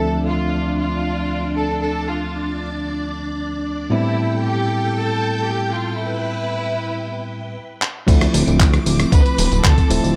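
A sleek, sensual nu-disco excerpt at 115 BPM in D dorian opens with an earthy chamber violin section carrying the melody through tape echo, over a bell-like tine electric piano and a lush, vintage string machine that pumps with sidechain and rides a filter sweep across Dm7 and Am7, until a drum fill from a dusty, gritty sampler-style kit at 7.8 seconds sets up the drop at 8.1 seconds, where a fat, detuned analog bass and a thumpy electronic kick join in under light reverb.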